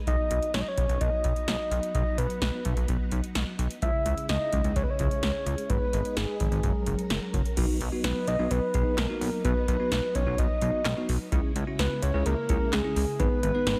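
Light reverb and a digital ambience give this wistful, nostalgic synth-pop excerpt a gentle, airy sheen. At 128 BPM in a straight 4/4 feel, a dry electro analog drum machine sits up front with a deep kick, punchy snare, metallic hi-hats, handclaps and crash cymbal, beside a glossy, chorused pulse-wave synth bass with a plucky, filtered attack. A round, dark octave-layered synth lead carries the melody with vibrato, chorus and delay, while a mellow, organ-like ensemble string pad holds sustained chords in the background. The harmony moves through B, C#m, G#m and F# in B major before cycling back to B at 7.6 s. At that point a bell-like tine electric piano with phaser joins the accompaniment and adds a clean, brilliant shimmer to the second half.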